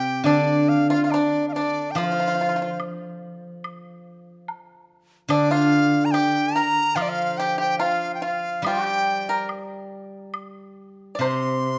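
A bright, reedy dizi carries the melody up front, its buzzing membrane and crisp attack giving a pure, straight tone to this tender, wistful Chinese chamber piece, taken from a longer work at a rubato 71 BPM in 4/4. Beneath it, a dry, percussive pipa plays a second line played with fingerpicks, while a silvery, ringing steel-string zither, also played with fingerpicks and placed up front, supplies low accompaniment. A close, dry woodblock enters at 0.3 s, and the whole ensemble is captured with detailed close microphones in a moderate recital hall reverb.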